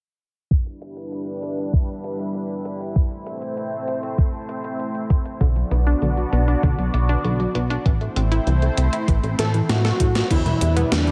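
Synthwave in E minor at 98 BPM, this driving, cinematic excerpt from a longer piece opens at 0.5 seconds with a lush, thick detuned unison pad holding sustained chords, colored by chorus, phaser, sidechain pumping and shimmer reverb, while a filter sweep runs through the passage. An up-front, thumpy overdriven electronic kick is joined by a gated 80s digital drum machine whose crash, hi-hat, gated-reverb snare and toms carry a sampler-style grit, both re-recorded in a small room. At 5.4 seconds a round, wave-folded analog pluck enters with chorused, delayed arpeggios, alongside a glossy, mellow chorused synth bass built from pulse and sawtooth tones. A bold, nasal unison lead with warbling vibrato takes the melody at 9.4 seconds, trailed by digital delay and shimmer reverb, as a drum fill arrives. The harmony moves through Em7, Am, Bm and Am before returning to Em7, all set in a light digital ambience with a low-pass filtered sheen and tuned slightly below standard pitch.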